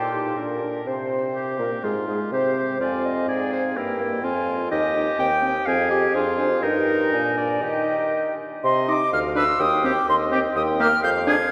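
A quick classical-period movement for wind quintet in Eb major at 125 BPM in a straight 2/4, this stormy, dramatic excerpt sets an airy, crisp-edged silver flute on the melody over a warm oboe second line, a clear, present clarinet and a punchy, distant French horn in the accompaniment, and a dark, smooth bassoon up front on the bass, all bathed in a long cathedral reverb before the harmony turns toward C minor at 8.6 seconds.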